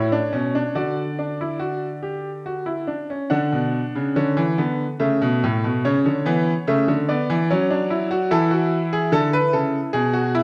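A clear, smooth grand piano with a vintage tone and long sustain sits up front, playing a joyful, elegant baroque-style three-part fugue in D major at a stately 72 BPM in 3/4, spanning A2 to F#5 across this short cut from a longer piece, its opening idea giving way to a second section at 3.3 seconds, all bathed in the lush reverb of a recital hall.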